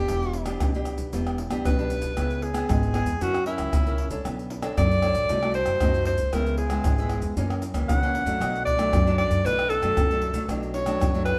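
A straight 4/4 samba-and-choro groove at 116 BPM in B minor drives this festive, sunny cut from a longer piece. Up front, a breathy alto saxophone solos with clear jazz vibrato and subtone, over a small, fingerpicked nylon-string guitar, a woody pizzicato upright bass, and soft-handed maracas, pandeiro, tamborim and a deep surdo, with the band playing live in a stone room with moderate reverb.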